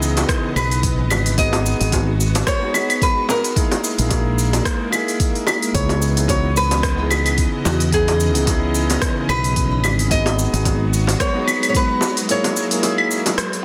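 Sunset chillout in C# minor at 110 BPM, smooth and relaxed, with a swung sixteenth-note feel in 4/4, heard as a short cut from a longer piece. A fingerpicked nylon-string guitar carries the melody with classical warmth and audible finger squeak, its lines touched by digital delay, while a dark, mellow baby grand piano with long sustain accompanies through the same delay. A silky string machine holds slow-attack chords beneath them, thickened by ensemble chorus, and a bright, growly fretless bass sits up front, dropping out at 11.1 seconds. The rhythm bed pairs a tape-warm, smooth R&B kit of cabasa, claves, smooth hi-hat and rim click with a deep, layered electronic kick and tight, high-tuned bongos played with soft hands, plus a barely audible downlifter in the opening moments. The harmony moves from C#m9 through G#m7 and Emaj7#11/A# before returning, closing on F#13 at 12.3 seconds, all set in light reverb and digital ambience with a dense, heavily limited modern master.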